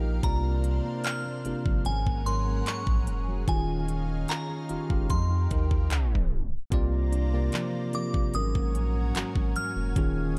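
A deep, saturated sub bass sits up front in this smooth, dreamy contemporary R&B passage, joined at 0.2 s by an electronic trap kit with a knocking kick, crisp hi-hats and handclaps. A bell-like tine electric piano treated with phaser carries the accompaniment, while a lush, detuned unison pad holds sustained chords through chorus. In the background, a fingerpicked steel-string acoustic guitar plays full-bodied arpeggios through digital delay, with finger squeak audible. Above them, a glassy FM synth bell carries the melody with chorus and delay, its crystalline notes striking and then decaying. The harmony moves through suspended ninth chords, and a tape stop at 5.9 s leads into a new section where a very quiet, round pluck adds texture from 7.1 s. The production is dark and dry, with little reverb, and the passage is cut from a longer piece.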